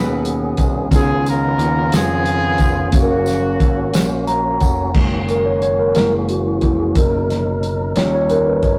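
In a straight 6/8 feel, this uplifting, soulful slow gospel piece opens with a smooth-topped horn section carrying the melody until 4.3 s over mellow tine electric piano chords, fat tonewheel organ with key click and a slow rotary speaker, bright, punchy picked electric bass and a muffled, dry soul drum kit with dark cymbals, while a jingly tambourine sits in the background and the electric piano plays a fill before soloing from 4.9 s, all set in a moderate stone room with a rough rehearsal-room sound and tube saturation.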